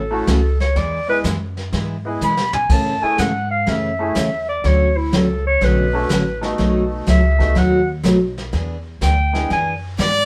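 A moderate room reverb surrounds this down-home, swinging western swing cut at 124 BPM, where a breathy, subtone clarinet solos up front over bright picked steel-string acoustic guitar, a woody, thumpy upright bass, an intimate upright piano with audible action noise and a vintage brush kit that plays a fill at 2.2 seconds, before a clear, bowed fiddle enters up front at 10.0 seconds.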